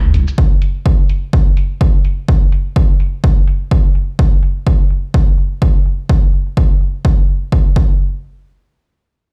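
Cool and hypnotic, this minimal techno cut from a longer piece rides a swung sixteenth-note groove in 4/4. An analog hi-hat and shaker, dulled by a low-pass filter and sitting far back in the mix, run from 0.1 to 7.4 seconds. A punchy, up-front analog kick enters at 0.4 seconds and holds to 7.9, while a filter sweep passes over the drums through the first 8.0 seconds, all heard as if through a big sound system in a bare room.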